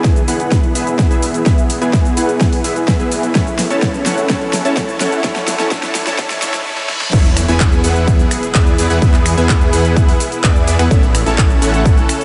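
A dreamy mix soaked in a huge ambient reverb opens this excerpt from a longer festival progressive house track, anthemic and uplifting at 127 BPM in E mixolydian. A punchy, full-bodied supersaw stab plays the riff up front through lush chorus, analog delay and a low-pass filter that sweeps through the build-up, while a lush unison pad holds bright, thick chords in the background, shaped by chorus and phaser. Beneath them, a detuned saw bass sits thick, beating and menacing, and every one of these three parts breathes with sidechain pumping. An electronic kick lands punchy and up front, joined by a big-room dance kit with a huge overdriven snare, handclaps, finger snaps, hi-hat, shaker and crash cymbal. Drum fills drive the build-up across the first 7.1 seconds, a reverse cymbal rises into the drop at 7.1 seconds, and a very quiet impact lands there as the chords move from E through A and Dsus2 back to E.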